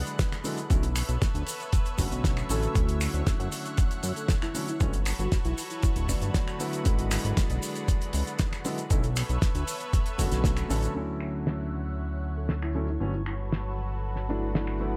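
A concert grand piano, a lush detuned pad and a thick sawtooth analog bass open this feel-good, groovy nu-disco excerpt together. The piano carries tape echo and long sustain, while the pad breathes with sidechain pumping under its chorus. The bass sits up front with a filter sweep, sustained beneath rich chords such as E9, Bm11, Dmaj9 and Gmaj9#11. A damped 70s kit supplies dry finger snaps, filtered hi-hat and a fat snare, joined in the background by a vintage, band-limited egg shaker layered with group handclap, and by a gritty, overdriven electronic kick that thumps up front until about 10.6 seconds. A soft octave-layered synth lead, round and dark with tremolo, vibrato and digital delay, slips in at 4.2 seconds and returns at 12.4 seconds, tucked low in the mix. Small room ambience gives the groove a close, intimate space.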